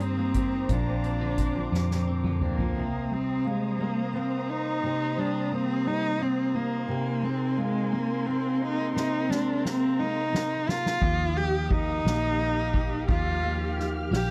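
A slow, straight six-eight sway at 58 BPM carries this tender, romantic pop ballad, cut from a longer piece, as a single bowed cello sings the melody up front with vibrato, a soft attack and portamento over a double-tracked, full-bodied fingerpicked steel-string acoustic guitar with finger squeak and a lush bed of sustained studio strings. A very quiet, twangy clean electric guitar adds arpeggios and a round, foam-muted vintage electric bass plays at the opening and again from 11.0 s, while a soft-mallet drum kit with dark cymbals and a boomy kick plays briefly at the start and returns with a fill at 9.0 s. The sound is dry and close in a 1970s studio manner, moving through chords such as Cm7 and Abadd9/C before reaching Ebadd9.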